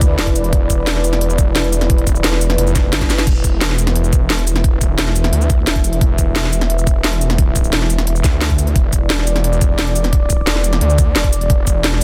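A snarling, growling distorted saw bass, detuned in unison and sitting up front, drives this aggressive, mechanical cut of dark technical drum and bass at 175 BPM in 4/4, over a knocking, layered electronic kick that stops at 11.7 seconds, a drum kit with cracking snare, crisp hats, crash cymbal and shaker that lands a fill at 3.0 seconds, and a deep, moody analog pad holding chords from an opening E5 with slow attack, chorus and sidechain pumping, set in digital ambience within a dense, heavily limited modern master.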